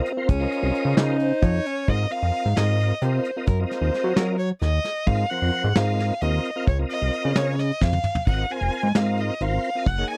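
A dry, close 1970s-style studio sound with light reverb frames this intricate, bright progressive instrumental, cut from a longer piece and moving in 7/8 at 263 BPM in Ab mixolydian, where a clear, close-miked alto saxophone plays a brief second line before a dark, bowed violin with expressive portamento takes the melody at 1.2 seconds, over a smooth tonewheel organ with chorus vibrato and fast rotary speaker, a fat sawtooth analog bass with filter sweeps, and a soft brush drum kit with a punchy kick and medium-tuned snare that plays a fill at 7.8 seconds.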